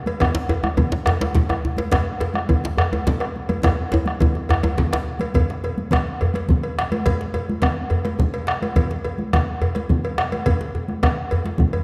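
Driving and earthy, this short excerpt from a longer West African drum ensemble piece moves in a straight 12/8 feel, with a round, up-front bombo anchoring high-tuned, ringing congas played with soft hands, a metallic cowbell, and a tight, cracking djembe sitting in the background. A second, medium-tuned djembe, close and dry with hard hands, joins from 0.3 seconds and drops out at 5.1 seconds, partway through a drum fill that begins at 3.6 seconds and leads into the second section at 5.4 seconds. The production is dark, bathed in a concert hall reverb.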